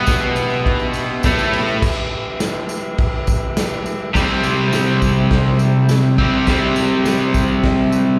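A crunchy, overdriven electric guitar riff, picked and double-tracked up front with slapback echo, opens this raw, swaggering garage rock excerpt at 103 BPM alongside mellow vintage combo organ chords with light vibrato in the background, while a punchy, gritty acoustic drum kit with a medium-tuned snare and rolled-off top and a jingly tambourine enter at 0.1 s, the harmony moving from E minor to C at 4.1 s, the whole live gig heard through the venue's PA in recital hall reverb.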